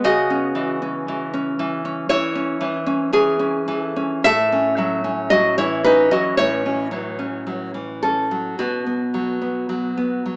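A fingerpicked nylon-string guitar opens this short, sunny romantic fragment for solo classical guitar, moving freely in rubato at around 51-59 BPM in 4/4 through C#m, F#m7/A and B5. The guitar sits up front with a warm, deep classical tone and tape echo, spanning A2 to E5. Light reverb and a small-speaker quality give the roughly 10-second cut the feel of a live performance captured in one room.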